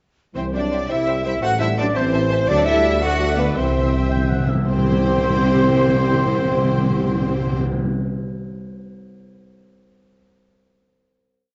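Timpani struck with hard mallets stand up front, entering at 3.6 seconds with a fill that rolls into the closing C chord of this soaring, adventurous film-score miniature in a straight 6/8. Lush, vibrato-rich violins carry the heroic theme over repeated-note violas and a close cello line, with double basses, a soft-attack tuba and dark, distant horns beneath, while a dark trumpet section, a mellow clarinet and a hollow silver flute double the tune at the octave. A warm oboe answers briefly at 4.1 seconds before the full orchestra settles onto a final chord at 4.7 seconds, all bathed in a wet scoring-stage reverb.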